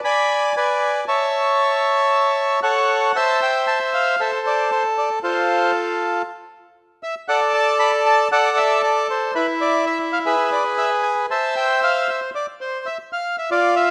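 A moderate, stage-like reverb surrounds a reedy, dark bandoneon playing up front and alone in this tense, melancholic tango fragment, taken from a longer piece, which moves rubato around 116 BPM in 4/4, turning from A major to A minor at 3.2 seconds and passing through chords such as Am, F and E before settling on Cadd11 at 11.4 seconds.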